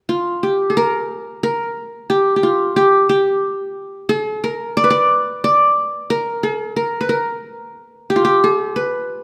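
The recording places a lone acoustic qanun up front in a moderate recital-hall reverb that gives each plucked note a gentle bloom. This short Arabic passage, cut from a longer piece, is festive yet stately, moving in 6/8 with a straight feel. The qanun plays solo from 0.1 to 9.2 seconds. It stays in a compact middle register between F4 and D5. Its plectrum-plucked triple strings sound mellow at the core with a bright edge on each attack, and the hall's ambience lends the instrument a dignified, ceremonial poise.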